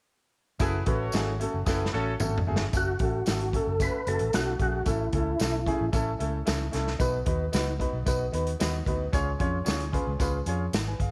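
Uptempo 1960s-style soul with a passionate, driving straight feel, built on a punchy acoustic drum kit, a dark foam-muted fingered electric bass, a clear up-front baby grand piano and a jingly tambourine in the background, as a smooth horn section plays a brief second line that overlaps a drum fill from 1.7 seconds, which leads into a mellow, percussive tonewheel organ melody through a fast rotary speaker from 2.8 seconds, all in a small room with light reverb in an excerpt cut from a longer piece.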